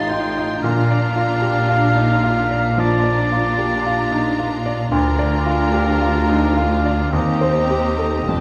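Classical romantic music for piano and orchestra, passionate and lyrical with a rubato feel, where a clear, up-front concert grand with audible action noise carries the melody over distant, vibrato-rich violins high above, a focused background violin second line, a warm oboe second line, lush viola accompaniment and bowed cellos and double basses, while very quiet, hard-mallet timpani sound only from 0.6 to 2.2 seconds, all set back in a wet recital hall.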